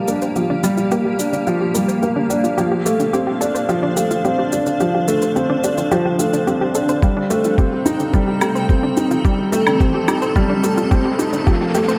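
A lush hall reverb surrounds this hypnotic, intimate piano and strings electronica build-up at 108 BPM, where a dark, woody upright piano riff with tape echo sits up front over a cloudy, evolving granular pad whose sustained chords pump with the sidechain. A round analog pluck plays arpeggios in the background under a filter sweep, with chorus and tape echo, while electronic shaker and woodblock tick through the passage. A muffled, thumpy kick drum enters up front at 7.0 s, and a background riser joins from 8.8 s as the chords move from Gm7 through Dm7 and Am7b5 to F7.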